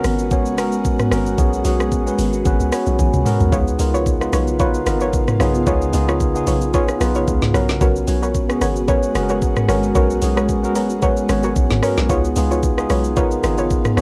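A swung sixteenth-note groove drives this late-night, deep amapiano cut, carried by an up-front R&B drum kit with a knocking kick, woody snare, hats, rim click, shaker and toms, alongside a hollow, bouncy log drum bass with a mellow, decaying FM tone. A clean tine electric piano sits up front with cassette-tape coloring and plays a short fill around 2.5 seconds, while an ethereal, airy pad hovers in the background with ensemble chorus, phaser and sidechain pumping as the harmony moves between G#m11 and C#7. From 3.5 seconds a soft, round, dark pluck adds gentle stabs through chorus, tape echo and plate reverb, all within a lightly reverberant home cassette recording taken from a longer piece.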